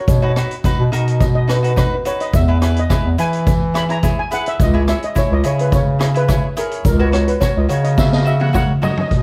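A straight 4/4 calypso groove at 106 BPM carries this festive, sunny excerpt cut from a longer piece, where a mellow, shimmering steel pan played with soft rubber sticks takes the melody as a solo over a crisp picked cavaquinho, an up-front bass clarinet in classical style, a street-band drum kit with a high-tuned snare, boomy kick and rolled-off top that plays a fill from 8.0 to 9.1 seconds, and a grainy egg shaker in the background, all moving through B, E, C#m and F#/C# in a dark production with light reverb.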